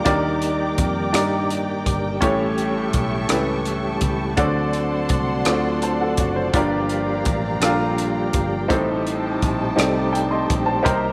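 Slow gospel in a straight 6/8 at 56 BPM, fervent and soulful, this excerpt moves through chords from Ebmaj7 through A7, D7 and Gm7 to Am7b5, with a clear, up-front baby grand piano carrying the accompaniment over a punchy, foam-muted fingered electric bass. A lush bowed string section holds sustained chords alongside a smooth tonewheel organ with key click, chorus vibrato and a slow rotary speaker sitting in the background, while a crisp, gritty fusion drum kit of hi-hat, punchy kick and rim click enters at 0.1 seconds in a small, pumping room. A moderate echo chamber reverb gives the ensemble a spacious glow.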